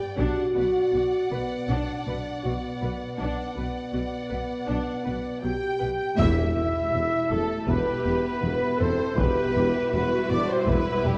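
Two lush, vibrato-rich violin lines open this dark, relentless cinematic fragment from a longer epic orchestral score. They are quickly joined by smooth violas, focused cellos, distant double basses, sustained French horn chords and a band-limited, vintage taiko ensemble struck with hard sticks that drops out at 1.7 seconds. At 5.4 seconds a distant, hollow silver flute adds a high second line while a tight trumpet section plays soft-attack stabs, and at 6.2 seconds a band accent lands as the taiko returns alongside round soft-mallet timpani, a clear, close string section and a mellow solo tuba, all bathed in wet concert-hall reverb and the worn, warbly pitch drift of old cassette tape.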